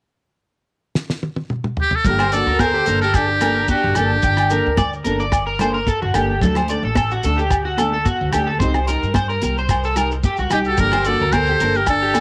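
A lightly reverberant cassette home recording carries this bittersweet highlife guitar band passage, which opens with a fill on a damped 70s drum kit with its fat snare and tight kick at 1.0 seconds before a buzzy, up-front muted trumpet takes the melody and a clear alto saxophone with soft, scooped notes adds a second line, both falling out and returning at 10.5 seconds, over a dark, full-bodied fingerpicked steel-string acoustic guitar, a woody pizzicato upright bass, a twangy, slightly broken-up electric guitar playing arpeggios through analog chorus and tape echo, and background congas, grainy shekere and ringing agogo bells.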